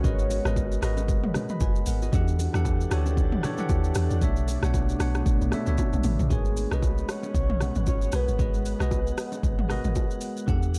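A dark, dry mix carries this hypnotic amapiano piece, anchored by an up-front log drum bass that is round and percussive with a fast attack and a decaying tail, and a layered electronic deep house kit of deep kick, metallic hats, rim clicks, shaker and toms. A bright, bell-like tine electric piano and a glassy, ethereal FM pad with ensemble chorus and sidechain pumping sit over minor eleventh chords, while very quiet congas and bongos played with soft hands add a live-room touch. A full-bodied, octave-layered synth lead with chorus, phaser, vibrato and digital delay sounds briefly at the start and returns at 6.3 seconds, just after a drum fill.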